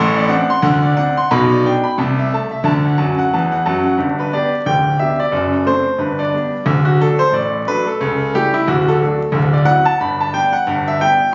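A brisk swing at 180 BPM in 4/4 drives this exuberant, playful stride piano fragment in G major, cut from a longer piece. A solo concert grand carries the whole thing, ranging from a deep bass D1 up to C6, with a clear, intimate tone, audible action noise and a boxy character that sits up front. The harmony moves quickly through dominant and slash chords such as D7/A, G/B and Am/C. A short piano fill closes the opening phrase from 3.0 to 4.0 seconds before a new passage takes over, touching A7/C# and D9 and ending on G7. The sound is that of a phone held in a club, with moderate room ambience, club reverb, compression, vinyl crackle and a dull top end that stops at 7.5 kHz.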